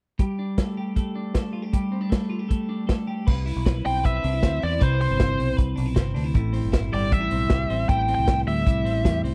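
A straight 4/4 pulse at 156 BPM drives this nostalgic, youthful stretch of jangly indie pop in C major, where a vintage drum kit with a punchy kick and dark cymbals plays beside the clean, twangy arpeggios of a bright twelve-string electric guitar from the start, a round fingered electric bass joins at 3.3 seconds as the chords move from Gsus2 to Cmaj7 and Am7, and a biting, overdriven lead guitar with slapback echo carries the melody from 3.9 seconds, in a dry, close 1970s-style studio sound with small room reverb.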